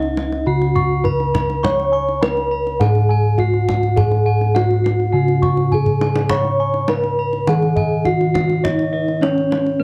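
Shimmering and serene, this fragment of a longer Javanese gamelan piece in slendro tuning pairs a mellow, soft-mallet bronze metallophone melody, its paired tuning producing shimmering beats, with bright horn-mallet metallophone arpeggios and airy bossed-gong arpeggios above a dark, round, up-front bossed-gong bass, while a deep kendang played in a live room adds a short fill at 5.7 seconds, all under light reverb and the worn, warbling pitch drift of old cassette tape.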